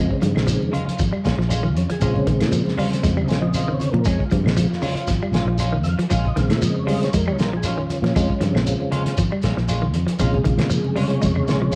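A lightly swung 16th-note afrobeat groove at 117 BPM in Bb dorian holds on a single Bbm7 while a mellow, round tonewheel organ with percussive second-harmonic attack, chorus vibrato and a slow rotary speaker takes an intense, funky solo across the whole cut-off passage, backed by dark hollow-body guitar arpeggios through tape echo, quieter clean guitar stabs in lush chorus, a punchy foam-muted fingered bass, a muffled, thuddy cloth-damped kit with a fat snare and tight kick that slips in a fill at 1.6 seconds, soft thick-skinned congas, a grainy distant shekere and faint woody claves, all captured as a lo-fi cassette home recording with light studio reverb.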